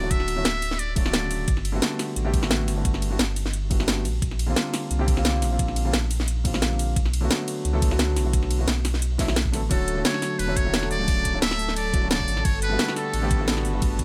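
A buzzy, metal-muted jazz trumpet with light vibrato and dub echo opens this lush, uplifting liquid drum and bass piece, falls away at 1.6 seconds and returns at 9.7 seconds alongside floating, pure sul tasto strings with sidechain pumping, all over a dark, mellow grand piano with digital delay, a round sine sub bass with tube saturation, a knocking electronic kick and an up-front, tape-warm kit of cracking snare, metallic hi-hats and ride cymbal.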